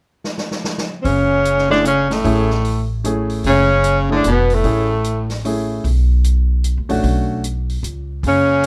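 A drum fill on an open kit with a boomy kick opens this cool, late-night fragment of small-group jazz swing in three, and at 1.0 s the woody pizzicato upright bass enters up front alongside a subtoned tenor saxophone with vibrato, scooped notes and plate reverb, paired with a clear, present baritone saxophone on a second line. The piano joins at 1.7 s with natural, short-sustain accompaniment over a light reverb, and the chords move from F#m7 to Bm7. The two horns drop out at 5.3 s and return briefly before the cut.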